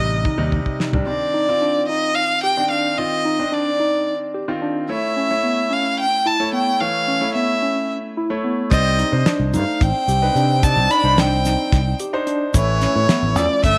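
Driving and brooding, this progressive instrumental excerpt in 7/8 at 220 BPM sets a clear, boxy violin melody up front over clear grand piano and a worn, lightly overdriven tine electric piano, while a bright fingered bass and a dry, fat-snared 70s drum kit, the kit playing an opening fill, drop out after about a second and return at 8.7 seconds alongside a subtone alto saxophone second line and a grainy tube shaker, all over Cm, Cmadd9 and A chords in a small, lightly reverberant room.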